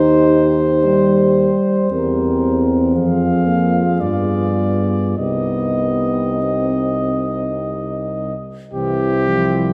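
In a slow triple metre with a flexible, rubato feel, this elegiac brass band passage moves like a hymn, heavy with melancholy. A warm, close-miked cornet carries the melody, while a mellow, vintage-toned French horn section sings a second line beneath it. Two euphoniums fill out the accompaniment: one clear and distant, set back in the room with a light vibrato, the other dark and close with a soft attack, sounding noticeably stronger. A soft-attacked tuba sits up front on the bass, anchoring the ensemble as every part plays throughout the short excerpt. The harmony moves through minor-key chords toward a dominant seventh, then settles on a minor chord before brightening to a major chord at 8.7 s. A generous church reverb with a 2.8 s tail surrounds the playing and lends it a solemn, spacious glow.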